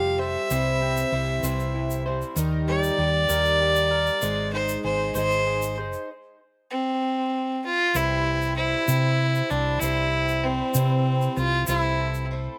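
A rich, biting fiddle opens this nostalgic, open-road stretch of folk rock and heartland rock in 6/8. It plays an earthy solo up front, with light vibrato and an airy bow. From the start it sits over a shimmering, octave-doubled twelve-string acoustic guitar, a slightly broken-up electric guitar riff through a small old amp, and a dark, round hollow-body bass that is fingered and amped up front. A grainy, bright egg shaker joins close by at 0.5 seconds. The picked twelve-string sounds boxy, with audible finger squeak and a swing to it, and both guitars carry a slapback echo. The electric guitar stops at 6.1 seconds, and the fiddle solo ends at 8.0 seconds as a new section begins on C and moves to Am/C, all recorded outdoors with little reverb.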